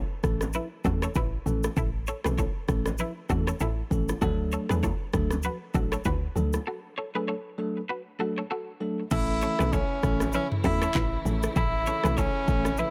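A breathy, whispered tenor saxophone with intimate jazz-style vibrato and a touch of delay takes the melody at 9.1 s, after a break from 6.7 s, in this breezy, joyful, swung afrobeats excerpt, where a twangy, slightly broken-up electric guitar riff with delay, a round, percussive log drum bass, a bright, bell-like tine electric piano, an up-front electronic drum kit with deep kick, crisp hats, handclaps, shaker and rim clicks, and soft-handed vintage bongos and congas in the background all sit in a dry sound.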